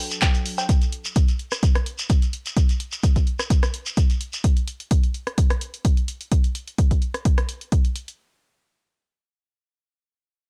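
A dry, gritty hardware recording with a cassette-tape character and a touch of digital ambience frames this raw, driving acid house excerpt, cut from a longer piece. It moves at 128 BPM in 4/4 with a light swing on the sixteenths, centred on B minor pentatonic with tuning slightly below standard pitch. A smooth, detuned sawtooth pad with a slow attack, chorus and sidechain pumping holds a rootless B minor chord only briefly, dropping out by 0.7 seconds. A punchy electronic kick sits up front, backed by an analog drum machine's cowbell, handclaps, hi-hat and rim click, both carrying a tape-softened edge. A grainy, mellow shekere with a live-room feel adds acoustic texture until 4.4 seconds, leaving the machine rhythm to drive the rest of the passage.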